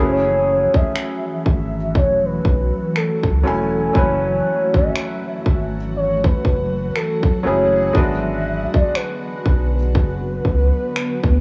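A slow 60 BPM groove in 4/4 with a swung sixteenth feel carries this sensual, late-night contemporary R&B excerpt in F# minor, where trap drums of finger snaps and a hard-clipped kick enter at 0.7 seconds, sitting up front over a deep, round analog bass. A felt-muted upright piano with audible action noise and an ethereal, detuned pad with ensemble chorus and phaser hold the chords, moving from F#m9 to G#m7b5 at 8.0 seconds, while a smooth gliding lead with vibrato, chorus and tape echo sings the melody above. The piano, pad, lead and drums carry a cassette-tape character, set in a small room with light reverb.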